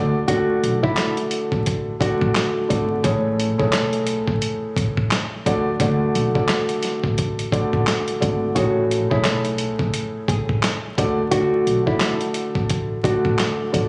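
Warm and soulful, this boom-bap hip-hop cut at 87 BPM swings its 16ths over a dark, mellow grand piano with audible action noise moving between D and Amaj7, a woody pizzicato upright bass, and gritty, compressed sampler-style drums with a thumpy kick, snare, hi-hat and handclaps entering at 0.3 seconds, while a small, thumb-plucked nylon-string guitar melody with slapback echo plays until 3.0 seconds and returns at 8.6 seconds, set in a phone-in-the-room club ambience with vinyl crackle.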